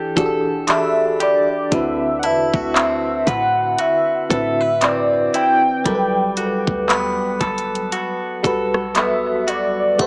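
Sensual and longing, this slow contemporary R&B excerpt with a swung feel drifts over Em11, D13 and Gmaj9 chords, led by a velvety, detuned sawtooth synth lead with chorus and vibrato that enters at 0.7 seconds alongside a crystalline FM bell glinting in the background. Beneath them, a warbling vintage FM electric piano with tremolo and phaser carries the harmony up front while a twangy, direct-recorded clean guitar picks arpeggios, a boomy sine 808 bass rumbles low, and a trap kit of knocking kick, bright hats, handclaps and rim clicks comes in at 0.2 seconds. The echo-heavy mix sits in light digital ambience with a small-speaker character.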